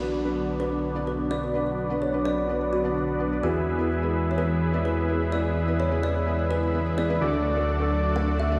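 A straight 4/4 pulse at 127 BPM drives this anthemic, euphoric EDM excerpt, where huge, bright supersaw chords carrying a filter sweep and a thick, saturated analog bass sit up front, a woody, ringing kalimba carries the melody through digital delay, a soft felt-muted upright piano with audible action noise rests in the background, and a lush pad treated with chorus and phaser sustains chords over Bm, E and D inside a reverberant stone-room ambience.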